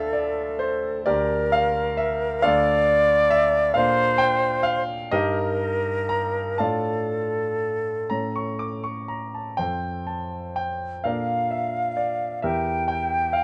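An airy, mellow silver concert flute sings the solemn, yearning melody up front with vibrato and a soft attack, while a polished, present grand piano accompanies throughout in this rubato romantic classical duo in 6/8, heard in light reverb with a dark, warm production across a brief fragment cut from a longer piece.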